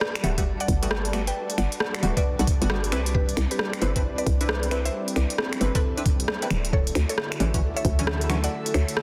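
A swung two-step groove at 134 BPM in 4/4 drives this soulful, bouncy UK garage excerpt in G major, built from crisp hats, finger snaps and rim clicks on a layered, up-front garage kit, with soft clipping on the snare and the sense of a large room around it. A gritty, thumpy kick, pitched down and compressed with a tape-tinged weight, enters at 0.4 seconds, while a hollow, knocking FM bass sits prominently in the low register with quick, decaying notes. Punchy sawtooth chord stabs with a vintage warble, treated with chorus, phaser and digital delay, trace the harmony from Gmaj9 to Cmaj9 and then Dmaj9. Above them, a woody, round mallet-like FM pluck carries the bright, percussive melody through chorus and delay. Underneath, a silky string machine holds very quiet sustained chords, and a breathy, detuned pad drifts in the background with phaser and sidechain pumping, all under light reverb and a dense, heavily limited modern master.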